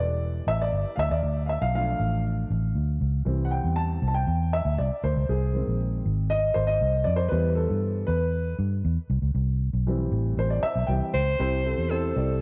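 Joyful and danceable, this short cut from a longer uptempo 1960s-style soul piece moves with a straight, steady feel. A dark upright piano carries the opening as a featured solo from the start, its woody, boxy tone sitting up front with long sustain and audible action noise that gives it an intimate character. Beneath it, a vintage muted fingered electric bass plays throughout, amped and round with a foam-muted thud placed close in the mix. The harmony shifts from Em through Dm, C and Ab before returning to Em and C. At 11.1 seconds a mellow alto saxophone slides in, jazz-styled with subtone, vibrato and scooped notes under a smooth top. A moderate spring reverb lends the recording a vintage sheen.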